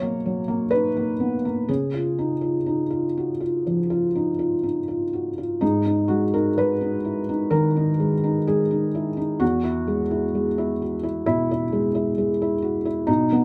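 Close, detailed microphones and a light reverb place a felt-muted upright piano up front, its tone soft, dark and intimate, with a thick-felt mellowness. This melancholic, reflective neoclassical minimalist piece is a fragment of a longer work: the solo piano plays with a rubato feel across the full 13.4 seconds, spanning E2 to C#5 and moving through Bmaj7, C#add9, G#m and E.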